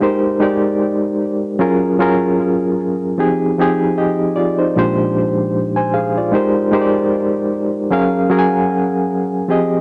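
Dry, gritty cassette-tape sound frames this hazy, nostalgic hip hop excerpt at 76 BPM with a light 16th-note swing, where a lone reedy, barky electric piano sits up front, lightly overdriven and shimmering with fast tremolo and tape echo through its built-in speakers, playing alone from 0.0 to 9.8 seconds over Abmaj7, Gbmaj7, Fm7 and Bb13 chords, slightly detuned to A4 = 437 Hz.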